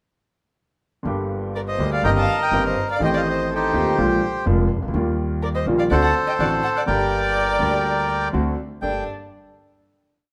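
A deep, smooth concert grand piano opens this passionate, tense rubato tango at 124 BPM in G minor, its uneven groups of three and two eighths shared by a woody pizzicato upright bass, while an up-front, reedy bandoneon carries a motif-based melody from 1.5 seconds and a close, bowed violin with vibrato and portamento adds a warm harmony line mostly in thirds, the piece closing on a final chord in a large studio reverb.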